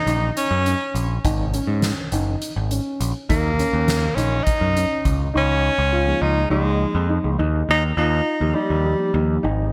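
A smooth-topped tenor saxophone with light vibrato leads up front in jazz style, its melody carried by slapback and tape echo, in this driving, tense progressive instrumental cut from a longer piece, moving at 205 BPM in 7/8 with a straight feel. A growling, overdriven picked electric bass sits just as far forward, while a dark concert grand piano spins long-sustaining arpeggios and a soft-mallet drum kit with a fat snare and boomy kick plays until about 5.2 seconds. From 6.1 seconds a mellow tine electric piano with slapback echo adds background accompaniment as the harmony moves from Ebm7 through Absus4 to Dbadd9 and Eb, set in light reverb and small room ambience.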